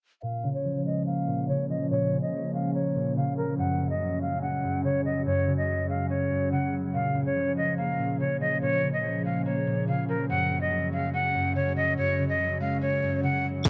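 In a half-time 4/4 drill feel, this cold, menacing hip hop excerpt opens with an airy, expressive jazz flute melody carrying vibrato and digital delay over a ringing, fingerpicked concert harp, both low-pass filtered beneath a filter sweep; a glassy, ethereal FM pad with ensemble chorus enters in the background at 1.2 seconds, before a punchy, heavy 808-style bass and a drill drum kit with a hard-clipped kick and bright hats land up front at 13.7 seconds, all within a dark production with a small room ambience.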